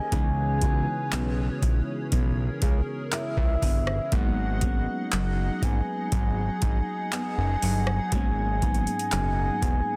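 Contemporary R&B at a slow 60 BPM in G# minor, this late-night, moody excerpt moves from C#m7 to G#m7, with a booming, overdriven analog drum machine (deep kick, metallic hats, handclaps and rim click) and a fat, saturated sawtooth bass sitting up front from 0.1 seconds. A round, octave-layered synth lead carries the melody with chorus, delay and vibrato, while a hollow, flute-like pad pumps gently beneath. A tremolo-laden FM electric piano and a dark, fingerpicked nylon-string guitar playing arpeggios, complete with finger squeak, sit in the background of a dry, dense, heavily limited mix.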